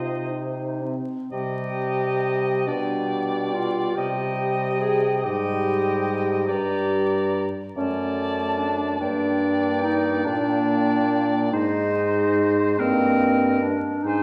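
Crackling vinyl and a reverberant recital-hall sound frame this solemn, elegiac fragment of a slow romantic movement for wind quintet in a flexible, rubato 6/8, where an airy, distant silver flute with vibrato carries the melody over a clear oboe second line, a present clarinet and a soft-attacked, vintage-toned French horn fill the accompaniment, and a mellow, up-front bassoon anchors the bass, all five playing throughout.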